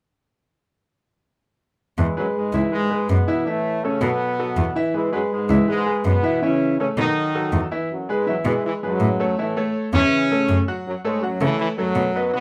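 Sunny and danceable, this short salsa excerpt sets a brilliant, punchy trombone section on the melody, its tight ensemble playing colored by vibrato, over a bright, woody upright piano with long sustain. A single bowed cello carries the bass up front, its sul tasto tone nasal, pure and floating with a soft attack. The harmony moves through minor sevenths, some of them rootless, along with B5 and B7 chords, before brightening at 7.9 seconds into a second section of added-ninth and major chords, all in a moderate studio ambience.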